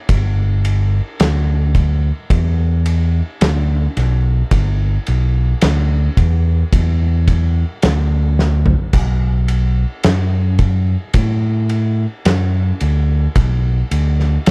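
Sludgy and ominous, this stoner and doom metal excerpt crawls at 54 BPM in a straight 4/4, cut from a longer piece. A picked electric bass with overdrive carries the low end from 0.1 seconds, ranging from G1 to A2 with a growly, amped and bright tone that sits up front. An oversized low-tuned acoustic drum kit plays alongside it throughout, using kick drum, snare, ride, splash and toms; its sound is dark, smooth, saturated and gritty, with a fat snare, a punchy kick and a stone-room character. A drum fill at 8.4 seconds briefly breaks up the heavy pulse before both parts carry on to 14.5 seconds. The dry, close 1970s-style studio sound keeps the reverb minimal and the instruments close to the listener.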